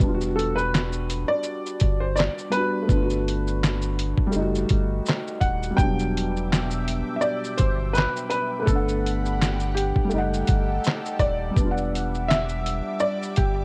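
Lo-fi hip hop excerpt at 83 BPM with a cosy, dreamy mood, where a muffled, thumpy sampler-style drum kit with handclaps, shaker and hi-hat swings under a felt-muted upright piano whose soft chords carry cassette-tape grit and audible action noise, a deep sine-and-triangle sub bass with octave holds the low end, a clear, woody upright piano melody arrives at 0.4 seconds through analog delay, and a lush, detuned sawtooth pad drifts in at 6.2 seconds with chorus and phaser as the chords move from Em7 through Gmaj7 to an Ebmaj7#11 before returning home.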